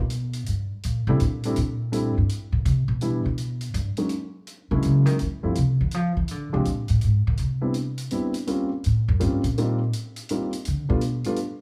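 Jazz piano trio in a swinging, playful 3/4 at 165 BPM, a short cut from a longer piece in which a woody, pizzicato upright bass takes the solo from the first second, up front and carrying the line over a colorful run of chords from Em through F#9, Bb9 and Cmaj9 to a closing G7. A soft, rolled-off hi-hat keeps time from 0.1 s, and an intimate baby grand piano with audible action noise and long sustain enters at 1.1 s, bathed in plate reverb. The whole trio sits in a large studio room with moderate reverb that keeps the sound natural and close.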